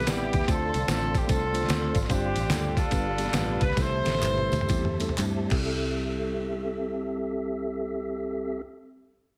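A roomy, loose horn section carries the melody up front in this soulful, reverent uptempo gospel excerpt in C major, swinging at 111-149 BPM over gritty, pitched-down sampler-style drums with a thumpy kick, a dark, round fingered electric bass, a clean tine electric piano, a soft, flute-like tonewheel organ with key click, chorus vibrato and fast rotary speaker, and small-room handclaps and tambourine, with a heavily compressed radio sound and light reverb on the mix, as the tempo slows from 2.1 s and a drum fill leads to the drums stopping at 5.6 s, leaving bass, electric piano and organ to carry the close.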